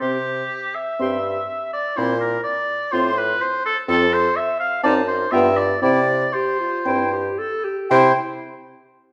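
Cheerful and spirited, this quick classical-period movement for wind quintet in C major moves at 113-127 BPM in 4/4 with a rubato feel, slowing down from 2.9 to 7.9 seconds as the harmony passes from C through C7/Bb, F/A and F#dim7 to G7 and home to C. A pure, silvery concert flute carries the expressive melody from a distance with vibrato and a crisp attack. A clear oboe sings the second line up front, while a mellow clarinet and a French horn in the background fill in the accompaniment, a warm bassoon anchors the bass with a soft attack, and a recital hall reverb lends the oboe and clarinet a roomy glow in this short cut from a longer piece.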